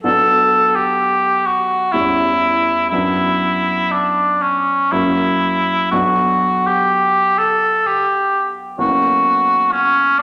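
A warm cor anglais with light vibrato carries the melody up front, its vintage, classical-style tone singing over a polished, clear baby grand piano that supplies the accompaniment beneath it in this elegiac, melancholic romantic duo. The piece moves in a slow 3/4 at around 62 BPM in B minor, with uneven, rubato phrasing that lets each beat breathe. Both instruments play throughout this 10.2-second passage from a longer work, bathed in the lingering reverb of a recital hall.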